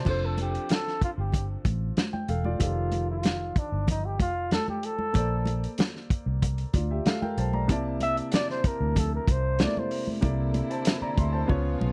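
A mellow flugelhorn with vibrato and scooped notes sings a smooth, romantic solo with slapback echo from 0.1 to 10.1 seconds over natural grand piano, a round, foam-muted electric bass, a muffled vintage drum kit with a fat snare, ringing high-tuned congas and lush bowed strings that return at 10.2 seconds, in this dry, close 1970s-style soul excerpt in F major at 94 BPM, which closes on a drum fill at 11.5 seconds.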